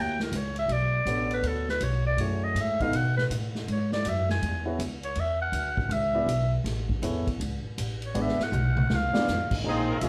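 Sultry, swinging big band jazz cut from a longer piece, led by a raspy, growling clarinet solo with scooped notes and light vibrato over a dark, mellow baby grand piano, a woody pizzicato upright bass, and a roomy, distant drum kit with a punchy kick that plays a fill at 8.5 seconds. At 9.6 seconds a brilliant, tight trombone section enters on a second line, joined by a clear trumpet section carrying the melody and a soft-attack trombone section holding brief chords. The band is heard from further back in a club room with a wet reverb.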